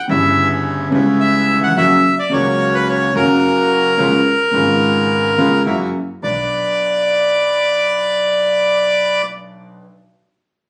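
A reedy, bright bandoneon carries the melody up front, dressed in plate reverb, in this melancholic, sultry tango excerpt in B harmonic minor, moving at a rubato 108 BPM in 4/4. A dark, boxy concert grand with long sustain and deep bass accompanies it, a second bandoneon adds stabs, and a woody, thumpy pizzicato upright bass sits in the background until 6.5 s, while the harmony settles on B minor at 6.2 s. Captured on a phone in the room, the piece carries a club-like reverb and compression.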